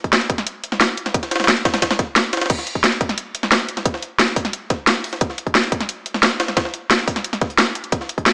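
A cracking, overdriven drum and bass kit sits up front with bright hi-hats, crash cymbal and snare, layered over a tight electronic kick that sounds re-recorded in a small room. Behind them, a gritty, pitched-up jungle sampler-style kit adds a high-tuned snare and hi-hats, compressed and filtered to thin out the low end. This short, aggressive and tense drum-only cut from a longer drum and bass piece carries light digital reverb and a small-speaker character throughout its 8.3 seconds.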